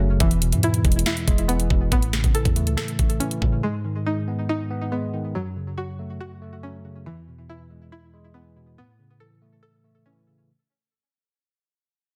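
Dark and hard-hitting, this half-time hip hop and trap excerpt opens with a knocking kick, sharp snare and bright hats up front over a deep, mellow sine 808 bass, the drums stopping at 3.5 seconds and the bass at 3.6 seconds. A clean tine electric piano carries the chords throughout, while a twangy, full-bodied string-like resonator pluck with chorus and digital delay spins arpeggios. It all sits in a dry, dense, heavily limited mix that fades out across its 10.5 seconds.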